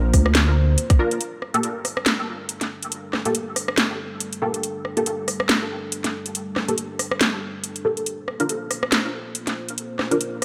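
Filtered dub chord stabs carry this dark, heavy deep dubstep excerpt from 1.0 s onward: muted and detuned, with a plucky short decay, they are bathed in phaser, ensemble chorus and dub echo at 140 BPM in G minor. A rumbling detuned saw bass and a tight electronic kick open the cut but fall away within the first second, leaving a garage kit of cracking snare, rim click and metallic hats to drive the swung half-time groove over a moody analog pad with a slow attack and chorus. A moderate echo chamber reverb lends depth as the chords move from Bb to Gsus2 and finally to Bb5.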